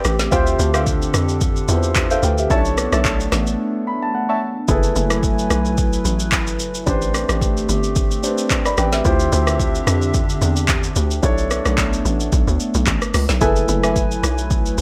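A swung sixteenth-note amapiano groove from an overdriven, up-front afro-pop drum kit, with its deep kick, woody snare, metallic hi-hat, handclaps, rim click and shaker, drives this soulful, deep excerpt, as a hollow, bouncy log drum bass sits under a warm grand piano and a dark, flute-like pad with chorus, while mellow chord stabs with chorus and digital delay sound until 4.4 s and return at 13.4 s, and a brief break at 3.6 s brings a grand piano fill, all in a dry mix.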